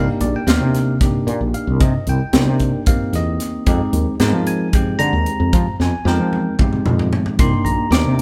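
Electric jazz fusion in C minor at 226 BPM, counted in eighths in a straight 7/8, this brief excerpt from a longer piece feels nocturnal and intense as a bell-like tine electric piano with a phaser voices Cm9 and Fm9 chords over a growly, woody fretless electric bass. A crisp fusion drum kit with a high-tuned snare and punchy kick enters at 0.2 seconds and plays a fill from 5.8 to 7.4 seconds, leading into the harmony's return to Cm9 at 7.4 seconds. The band plays live in one room, with moderate large studio reverb and all three parts up front.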